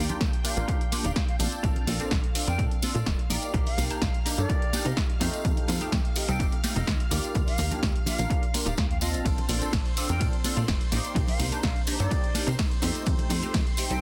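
A dense, heavily limited and nearly dry mix carries this joyful, feel-good filtered disco house cut, where a punchy electronic kick sits up front beside a punchy analog drum machine, bright hard-handed tambourine and congas, a plucky wave-folded analog bass, a detuned, phased polysynth comp, a lush vintage string machine, a dark, clean electric guitar riff that adds a fill at 8.5 s, and an airy silver concert flute melody roughened by 12-bit sampler grit, with sidechain pumping on every part except the kick.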